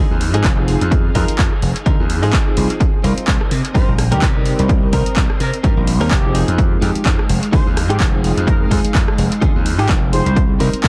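Filtered disco house with a sensual, nostalgic swing, where an overdriven, up-front electronic kick and gritty, bright slap bass drive beneath punchy analog drum-machine claps, hats and rim clicks, a compressed clean electric guitar riff with a fill at 9.7 seconds, an intimate grand piano soaked in phaser and dub echo, a lush, very quiet string machine holding sustained chords, and a dark, distant trumpet section carrying the melody from 3.7 seconds, all in an echo-heavy mix.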